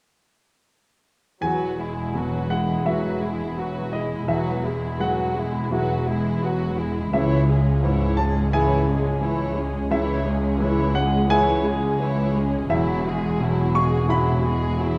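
Cinematic, emotional orchestral film score in E major at 86 BPM, played rubato, with a tender, moving mood, cut from a longer piece, and every part enters together at 1.4 s. A clear, up-front baby grand piano carries the accompaniment with short sustain. Muted violin sections, dark and veiled, sing the melody in the background over a second violin line, backed by con sordino violas, a cello section and a distant double bass section, all bowed with vibrato, while a very quiet thumb-plucked concert harp rings out arpeggios. The harmony moves from Eadd9 to C#m and back, and a moderate scoring-stage reverb surrounds the ensemble.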